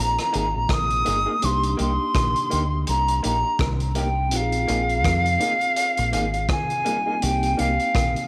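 A pure, expressive concert flute carries a longing, bittersweet melody from the start over a mellow tine electric piano, both trailing tape echo, while a deep, round, punchy fingered bass sits up front in this brief cut from a lovers rock reggae groove at 83 BPM in C minor. A vintage drum kit joins at 0.2 seconds with hi-hat, rim click and a punchy kick under a rolled-off top, and at 0.3 seconds a slightly broken-up, lo-fi electric guitar adds picked stabs shimmering with harmonic tremolo. The swung sixteenths and light studio reverb frame a gentle sway between Bb7sus4 and Cm7.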